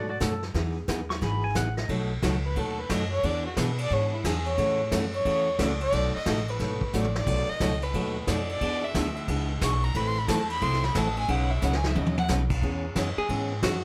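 Western swing country with a down-home, swinging feel, this excerpt opens on a bright, twangy pedal steel guitar before a rich, nasal fiddle takes the lead at 2.5 seconds over a bright, full-bodied picked acoustic guitar, a woody, thumpy upright bass and a vintage brush kit with dark cymbals, and a clean, up-front hollow-body archtop guitar with plate reverb slips in at 13.2 seconds as the clip is cut.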